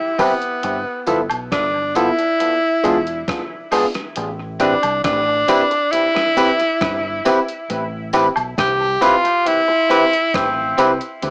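A breathy, whispered tenor saxophone carries a longing, bittersweet melody up front in this slow lovers rock reggae cut at 68 BPM in A minor, over a bright, barky electric piano, dark, slightly broken-up guitar stabs with chorus and delay, a thumpy overdriven 8-bit drum machine, tambourine and woodblock, and a round, punchy dub bass entering at 0.6 seconds, all with the lo-fi, small-speaker sound of a home cassette recording.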